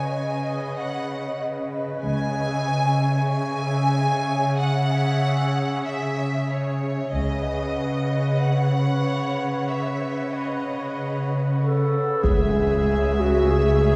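In a straight 4/4 pulse, this tense, ominous suspense cue from a film score sets a distant, vibrato-rich violin section melody over a bubbling, detuned sawtooth texture whose resonant filter steps at random through sustained chords bathed in chorus and its own reverb. Beneath them, an up-front cello section holds a lush, focused bass, joined by brief, expressive bowed notes from a distant double bass section. A close-miked classical clarinet enters at 11.6 seconds, and at 12.2 seconds the music turns to a new section with a huge, bright impact, hard-stick taiko drums set in the background and a focused second violin line, joined a moment later by a smooth viola section, all heard from further back on a reverberant scoring stage.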